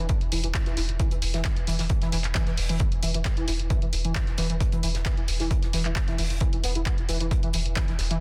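A dense, heavily limited modern master with little reverb carries this relentless, hypnotic stretch of driving peak-time techno at 133 BPM in a straight 4/4, resting on an E5 chord throughout. An up-front, punchy electronic kick anchors a deep, thick saturated sub bass on E1, while a gritty, screaming overdriven synth lead with a guitar-like edge and vibrato plays a riff between E3 and B3, colored by tube saturation, ensemble chorus, dub echo and sidechain pumping. An analog drum machine re-recorded in a large room adds handclaps and pumping hi-hats, and a cloth-damped, thuddy acoustic kit with a rolled-off top sits in the background on hi-hat and snare.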